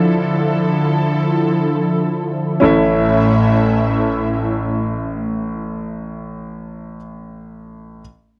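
A lush, thick unison pad of detuned sawtooth with an airy noise layer holds sustained chords up front, its slow attack coloured by chorus and phaser, until 6.3 seconds. Alongside it a bright, brilliant concert grand piano with deep bass, short sustain and a polished, present tone sits up front and plays accompaniment through to 8.0 seconds, moving from Dmadd9 to A major in this uplifting, anthemic pop fragment in free time, tuned to A4 = 443 Hz. The sound is dry and close in the manner of a 1970s studio, with light reverb.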